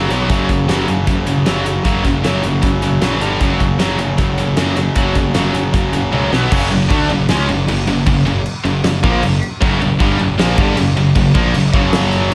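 Epic and relentless, this heavy metal excerpt charges along at 155 BPM in a straight 4/4, centred on F# major. Three bright, picked electric guitars carry the riff together from the start: an overdriven, double-tracked guitar and a tight distorted one sit in the background, while a high-gain distorted guitar completes the trio. Beneath them, a growly, fuzz-laden picked bass, overdriven with a direct and amped tone, anchors the low end, and a big acoustic drum kit sits up front with a punchy kick, fat snare, toms, hi-hat and bright cymbals in a large, dark room. The chords cycle through B5, F#5 and G5, and a drum fill at 6.1 seconds sets up the shift into a half-time feel at 6.5 seconds that gives the second section a heavier, more massive stride. Light reverb gives the mix a sense of space while keeping its attack forceful.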